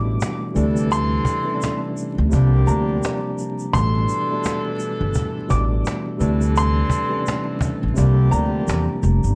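Boom-bap hip-hop at 85 BPM in 4/4, this short, gritty and reflective cut sits in A phrygian with a lazy 16th-note swing and a dark, dry production dusted with vinyl crackle. A woody, pizzicato upright bass on steel strings sits up front and carries the low end, while a snappy cajon with snares, roughened by vintage 12-bit sampler grit, enters at 0.2 seconds alongside a grainy, bright egg shaker tucked far back in the mix. High above, an intimate upright piano with audible action noise plays the melody in a narrow upper range, its tone smooth and vintage and trailed by tape echo. Beneath it, a clean tine electric piano, heard through its built-in speakers, supplies the accompaniment. A distant, roomy saxophone section with jazz-style vibrato adds soft stabs bathed in plate reverb and tape echo, cycling with the band through suspended ninth chords on A, D and C until it drops out at 9.0 seconds.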